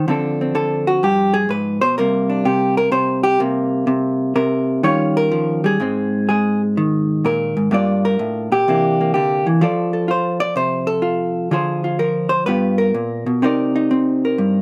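A vintage hollow-body electric jazz guitar plays alone and up front for the full 14.6 seconds, its dark, clean, picked tone compressed. This short solo jazz passage, cut from a longer piece, feels cool and swinging, with a loose rubato edge over a swung pulse. The guitar moves through rich changes such as Dm7, G7#9 and Cm9 across two matching sections, the second starting at 5.8 seconds, all set in a light reverb.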